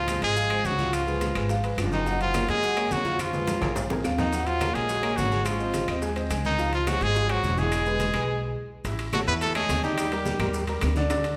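Afro-Cuban jazz at a lively, danceable 212 BPM in Db major, this short cut from a longer piece puts a brilliant, punchy trumpet up front on the melody with light vibrato, while a bright trombone with scooped notes carries a second line in the background and a clear concert grand piano and growly pizzicato upright bass drive the harmony. Congas, timbales, bongos, maracas, claves and a raspy guiro fill out the percussion, with the saturated congas and ringing metal-shell timbales most audible and the vintage, band-limited claves barely there. A drum fill lands at 3.2 seconds and a stop at 8.3 seconds before a new section, all set in the reverb of a recital hall.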